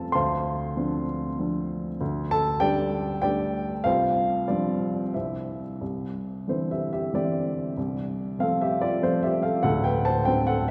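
A long, wet church reverb surrounds this short excerpt, which was recorded in a church or concert hall and cut from a longer piece. At its center is a solo baby grand piano, dark and mellow in tone, placed up front and intimate, with the noise of its action audible, and spanning a range from D1 up to C6. The music is lyrical classical piano in 3/4, moving at roughly 89-100 BPM with a free rubato feel, and the mood is sunny and hopeful. The opening passage drifts through Dm7, Gsus2/D and Csus4 before settling on C, and from 5.8 s the piece rests in C major. The second passage colors that key with Cadd9 and F/C, then turns toward D7 at 9.6 s before the clip ends at 10.7 s.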